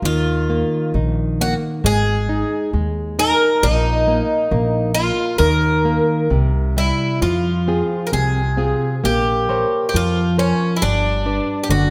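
A shimmering, octave-doubled picked twelve-string acoustic guitar carries the melody up front in this passionate, longing fado-style ballad at 67 BPM in 2/4, its bright, boxy tone played with a swing and a rubato feel, entering at 0.1 seconds. Beside it, a fingerpicked flamenco guitar supplies warm accompaniment, also up front, while a pizzicato upright bass on gut strings adds a woody, dark, thumpy low end. The short cut from a longer piece sits in moderate recital hall reverb, with the chords moving from Eb5 and Ab5 into a new section at 7.2 seconds through Fm and Bbmadd9 before landing on G.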